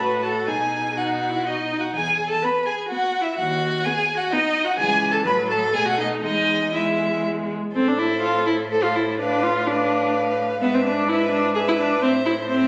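An expressive, close viola with soft attacks and portamento stands out in this quick, spirited classical-period string quartet movement in 3/4, moving at 118-130 BPM with a graceful rubato feel. Above it, a warm, focused first violin carries the melody, while a rich, up-front second violin adds an even second line and a smooth cello holds the bass; each single player bows with vibrato in a moderate recital-hall reverb with a club-like ambience, as captured on a phone in the room. The music opens in E major and turns to A minor at 7.7 s, and this cut from a longer piece ends at 12.7 s.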